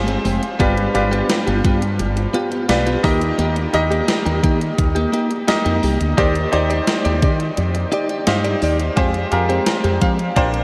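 A bright grand piano and a round, woody fretless bass open this short romantic, nostalgic stretch of 1980s-style pop at 86 BPM in a straight 4/4, with the bass carrying a subtle chorus and the piano washed in shimmer reverb. At 0.1 seconds a clean, direct-recorded electric guitar enters with a compressed, picked riff, treated with analog chorus, digital delay and shimmer reverb. Alongside it comes a gated 80s digital drum machine with a thumpy kick, hi-hat and a gated-reverb snare, its overdriven sound re-recorded in a large room. The harmony in Eb major moves from Fmadd9 through G7, Eb and Cmadd9/Eb before returning to Fmadd9, and the piano adds a fill from 9.7 seconds to the cut. The dreamy mix is soaked in a huge ambient reverb with a long tail, with piano and bass sitting up front.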